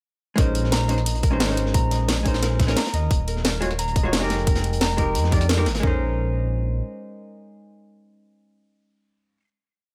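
Lush and dreamy, this short liquid drum and bass piece runs at 176 BPM in Bb minor, riding a drop of minor eleventh chords. Up front, a deep, rumbling detuned saw bass plays long gliding notes under a tight two-step garage kick with floor tom, a cracking, tape-warm garage snare and closed hat, and a dark, gritty looped breakbeat with a rolled-off top. A clean, compressed hollow-body jazz guitar with 12-bit sampler grit and delay adds syncopated drop-2 chord stabs, while a ringing fingerpicked harp loops a six-step arpeggio that drifts against the bar in the background; the drums drop out near 5.8 seconds for a final held chord, and the guitar rings on to 9.4 seconds in a small, lightly reverberant room.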